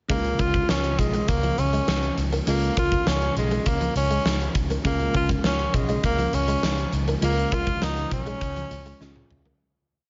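1980s-style pop with a nostalgic, romantic mood, this short piece is a single verse moving from a Db6 chord to Bbm7 at 4.8 seconds. Up front, a clear tenor saxophone with light vibrato and a touch of delay carries a pop-style solo melody built from hook phrases. Behind it, glassy, detuned digital keys with chorus and a filter sweep hold drop2-voiced chords decorated with grace notes, while a bright, compressed clean electric guitar, recorded direct and treated with ensemble chorus, picks a muted single-note line in the background. A dark, round, foam-muted picked bass drives steady eighth notes under a huge arena drum kit with a punchy kick, fat snare and big backbeat in a pumping hall sound. Light reverb and studio ambience surround the band as the mix fades out from 7.2 seconds, and a drum fill closes the piece from 9.0 seconds.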